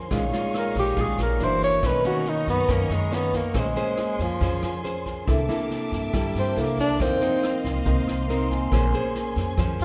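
Bossa nova at 139 BPM in Bb minor, melancholic and intimate, where a breathy, whispered tenor saxophone solo enters at 0.6 seconds over fingerpicked nylon-string guitar, woody pizzicato upright bass, a brushed drum kit with a boomy kick and rim click, a ringing vibraphone in the background that adds a brief fill at 8.1 seconds, and lush bowed strings with portamento, all bathed in the reverb of a recital hall through chords such as Bbm9, C13 and F7sus4 in this excerpt cut from a longer piece.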